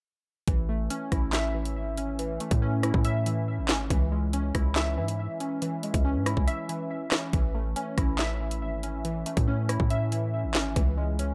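Dark and tense, this half-time drill excerpt pairs glassy, detuned digital keys thickened with chorus, low-pass filtering and analog delay against a punchy, heavy 808-style bass and an up-front electronic kit of knocking kick, sharp snare, handclaps, rim clicks and metallic hats, all sitting in an echo-heavy mix with light reverb, moving between A and C#m with a brief break at 6.5 seconds.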